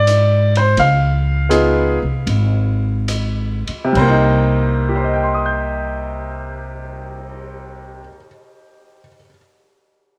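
Smoky and late-night, this brief jazz piano trio excerpt in C minor swings at roughly 66-88 BPM, easing and slowing through its first 4.0 seconds before settling on a minor-seventh chord. A bright, brilliant upright piano carries the melody up front with intimate action noise and long sustain, over a growly, thumpy pizzicato upright bass and a soft open drum kit with dark cymbals, boomy kick, hi-hat, ride and a crash. Light reverb and a worn cassette-tape warble with drifting pitch give the whole recording a faded, old-tape character, the bass dropping out at 8.1 seconds while the piano rings on to 9.4.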